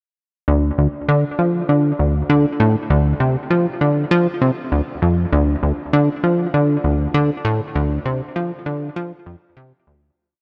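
A plucky analog bass opens this short, mysterious and cosmic ambient piece at 0.5 seconds, playing alone throughout a repeating 16-step sequence with a punchy, funky sawtooth and pulse-wave tone, a fast attack and a decaying filter pluck that evolves as it goes. Sitting up front, the bass is fed through analog delay into a huge, moderate ambient reverb that gives it a vast sense of space. The whole piece begins to fade out at 6.9 seconds and is gone by 10.2 seconds.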